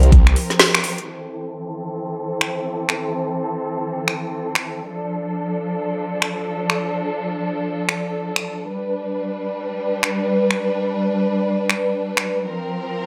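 Gritty and aggressive, this bass house excerpt at 126 BPM in A minor with a swung sixteenth feel sets a dark, lush bowed string section holding sustained chords, pumping under sidechain and a low-pass filter that sweeps from 1.1 s, against an up-front garage drum kit of finger snaps, metallic hi-hat and woody snare that stops at 12.2 s, all moving through Bbsus2, Am, Dm and G in a digital plate-reverb ambience.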